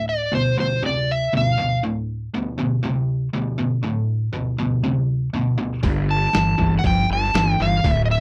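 Blues rock in the power-trio mould with a southern rock streak, this short cut from a longer piece moves at 120 BPM in a straight 4/4 in D minor, with a heavy, smoky mood. A bright, double-tracked distorted electric guitar carries the low riff throughout, sitting up front on a D7 chord stripped of its third before shifting to G5 at 5.8 seconds. A dark, overdriven slide guitar sings the melody at the opening and again from 6.1 seconds. At 5.8 seconds a fuzz-soaked fingered electric bass arrives, direct and amped, alongside a lo-fi sampler-style drum kit that sounds pitched down, muffled and compressed, with a thumpy kick, medium-tuned snare and hi-hat re-recorded in a small room. The sound is dry and close, like a 1970s studio session with barely any reverb.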